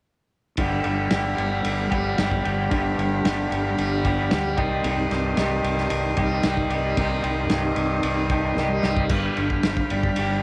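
An up-front, slightly broken-up electric guitar riff with harmonic tremolo leads this mysterious, trippy psychedelic rock excerpt at 113 BPM, over a growly fuzz bass, a shimmering tanpura drone, buzzy combo organ chords with heavy vibrato and a gritty, saturated breakbeat kit with dark cymbals, moving from G7 to Cm and back after a drum fill at 8.6 seconds.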